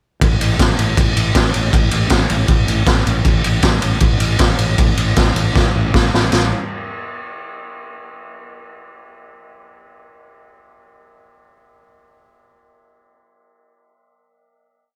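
Dry with little reverb, this short, complete garage rock piece has a gritty, raw mood at 156 BPM in a straight 4/4. A dark, round fuzz bass with overdrive drives eighth notes around A1 under a saturated, up-front acoustic kit heard in a small room, whose punchy kick, medium-tuned snare, ride and splash cymbals set a stomping groove with a rolled-off top. The riff runs from 0.2 seconds, a drum fill arrives at 5.6 seconds, and a final note sounds from 6.3 seconds.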